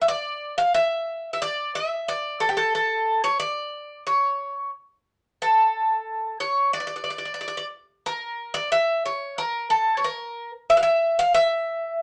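A bright, metallic solo Greek bouzouki, picked on double strings with some octave-doubled courses and placed up front in a moderate studio reverb, plays a moody, cool Greek folk line in D harmonic minor at 90 BPM in a straight 4/4, ranging from G4 to F5 across this 12-second cut from a longer piece.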